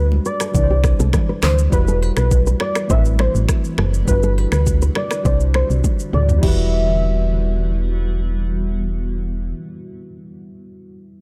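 A smooth, hypnotic afrobeats passage cut from a longer piece opens with a velvety, mellow sawtooth synth lead carrying the melody through chorus and tape echo, gliding with vibrato and portamento over a worn, slightly out-of-tune electric piano heard through a combo amp. Underneath, a punchy, round FM bass sits up front with a dark, digital bite, while a woody, thumb-plucked nylon-string guitar with old strings plays a riff in the background, colored by tape echo. Thick-skinned congas with hard hands add a brief, saturated touch as a layered, electronic deep house kit with a deep kick joins them, mixing rim clicks, finger snaps, handclaps, shaker, toms and crash cymbal. A cloudy, evolving granular pad drifts in at 2.5 seconds with its own reverb, blurring sustained chords beneath the jazzy seventh and add-nine harmony. A drum fill leads into the final section, after which the drums and guitar drop away at 6.6 seconds, leaving the bass, pad, lead and electric piano in a dry mix.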